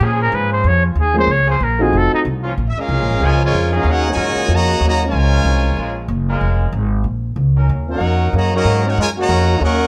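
Big band swing with a dramatic, sultry mood, cut from a longer piece, opens on a breathy, whispered solo trumpet with scooped notes and vibrato, while a distant, roomy trombone section holds bright sustained chords and a thumpy, woody pizzicato upright bass on gut strings sits up front. A warm upright piano with long sustain adds accompaniment briefly from 1.1 seconds. At 2.7 seconds a brilliant trumpet section takes over the melody with light vibrato, and a mellow, vintage trombone section soon adds a second line beneath it, all under light reverb.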